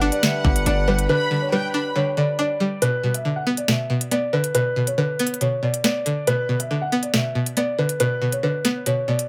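Ominous and cold, this half-time drill cut at 139 BPM sits in B minor and moves from a G chord to B minor at 2.8 seconds. A dark, boxy grand piano carries the melody throughout, trailed by analog delay, while a twangy, full-bodied resonator pluck with chorus and a filter sweep supplies the accompaniment underneath. At the opening, a floating violin section played sul tasto adds a soft second line that ends at 1.9 seconds, and a distant, roomy brass ensemble holds sustained chords with light vibrato until the change. A saturated, aggressive 808-style bass hits G1 briefly at the start, and the drill kit, with its knocking kick, sharp snare and crisp hats, drops out from 1.1 to 2.8 seconds before returning minus the kick. The echo-heavy mix sits in a small room with light reverb, keeping the piano, pluck, bass and drums up front.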